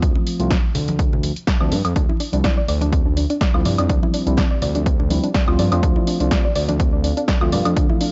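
Opening on an overdriven, punchy analog kick, with drum machine hi-hat, snare and woodblock, a smooth gliding sawtooth bass up front and mellow tine electric piano stabs that pump with the sidechain and trail tape echo, this moody deep house excerpt at 124 BPM in D minor, lightly swung on 16ths over a move from F to Dm11, adds very quiet close congas, a soft round chorused pluck arpeggio from 2.0 s and a dark, detuned ambient pad from 4.1 s, set in a dry, gritty hardware sound dusted with vinyl crackle.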